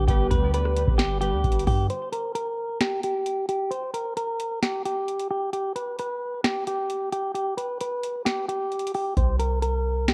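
A half-time trap groove in 4/4 drives this hard-hitting, menacing hip hop cut, taken from a longer piece, built on a booming analog drum machine with a deep kick, crisp snare, metallic hi-hats and rim clicks sitting up front. A clean, compressed electric guitar carries the melody throughout, played fingered and dressed in spring reverb and a low-pass filter. In the opening stretch over a G chord, warbling, detuned lo-fi synth keys with chorus and ring modulation add nostalgic accompaniment, a very quiet, dark sawtooth pad holds moody sustained chords beneath, and a sine-toned 808-style bass pushes boomy, decaying low notes. At 1.9 seconds the keys, pad and bass drop away for a long break where guitar and drums carry on alone, until the 808 returns at 9.2 seconds under a C5 power chord. The whole mix has a worn cassette-tape character with wobbly pitch drift and a light touch of reverb.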